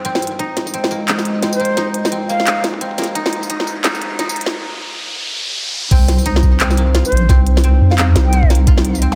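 Riding a half-time drum and bass groove at 174 BPM in 4/4 with a 60% swing on the sixteenths, this dark, heavy excerpt in C minor opens on an Fm7 chord as a build-up, with a filter sweep running under the first 5.9 seconds. A deep, moody analog pad holds sustained chords through a lush chorus and sidechain pumping, while a dry, woody koto, picked with fingerpicks, spins arpeggios through a low-pass filter and digital delay. The organic electronic kit pairs a woody snare and crisp hats with handclaps, tambourine and crash, tape-toned and re-recorded in a large room, beside a gritty, thumpy, compressed sampler-style kick. A breathy, close-miked concert flute floats brief straight-tone phrases through dub echo, a background riser enters at 2.9 seconds, and a break arrives at 4.5 seconds. At 5.9 seconds the drop lands on C minor as the kick returns and a saturated, detuned wobble bass with chorus surges up front, its deep sine and triangle tones giving the section its weight.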